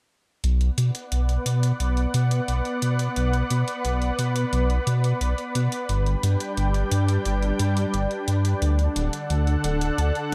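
Nocturnal and cinematic, this synthwave excerpt in B minor moves at 88 BPM in a straight 4/4, with a deep, rumbling detuned saw bass carrying tube saturation and a filter sweep from 0.4 seconds, a silky, bright analog string pad holding chorused chords from 0.8 seconds over a Bm, G and D progression, and a faint gated 80s digital drum machine of tape-toned hi-hat and toms sitting behind them in an otherwise fairly dry mix.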